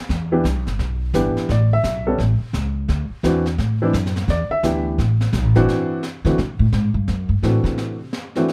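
Jazz piano trio in a sophisticated, swinging mood, where an intimate baby grand piano with audible action noise and short sustain solos up front until 5.7 seconds, when the woody, thumpy pizzicato upright bass on gut strings takes its solo, while a quieter brush kit with a high-tuned snare and punchy kick plays beneath in a dry studio room.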